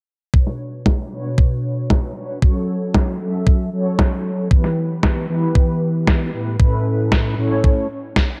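This danceable, melodramatic Italo disco passage, cut from a longer piece, rides a thumpy, tape-warm electronic kick and a fat, low-pass-filtered electronic snare, both sampler-style and up front, under a filter sweep. Mellow synth brass stabs enter at 0.3 seconds with a dark, round, detuned sawtooth tone edged by ring modulation, chorus and digital delay, moving through Bmadd9, F#m, Em and Aadd9 under a sweeping filter. The brass stops at 7.9 seconds, leaving the drums to run on in light reverb and digital ambience.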